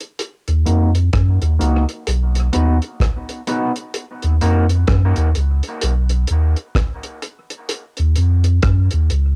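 A nearly reverb-free home cassette recording carries this meditative, spacious dub reggae fragment at 64 BPM in Eb minor, swung on the sixteenths and rocking between Ebm and B. A cloth-damped, thuddy kit of tight kick, rim click and hi-hat sits up front, dark and rolled-off on top with cassette tape colouring, while a round, sine-like sub bass enters at 0.5 s, deep and mellow with transformer saturation. From 0.7 s to 4.7 s, a twangy, picked electric guitar at the edge of break-up drifts through a low-pass filter sweep and dub echo, sitting lower in the mix.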